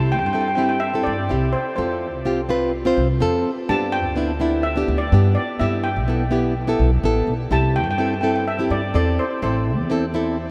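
A straight 4/4 calypso groove at 126 BPM sets a bouncy, sunny mood in C major: a shimmering steel pan struck with hard rubber sticks carries the melody with a slapback echo, a dark, full-bodied fingerpicked nylon-string guitar sits up front in accompaniment, and a woody, thumpy pizzicato upright bass on gut strings anchors the low end, all moving through Cadd9, F, G, Em, C and Am in a vast, echoing space of huge ambient reverb.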